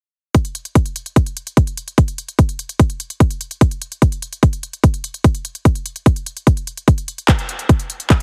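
A heavy, layered electronic kick drum sits up front in this intense, hypnotic psychedelic trance excerpt at 147 BPM in a straight 4/4, entering at 0.3 seconds alongside a produced techno drum kit of handclaps and smooth hi-hats, all in a dry, heavily compressed radio-style mix.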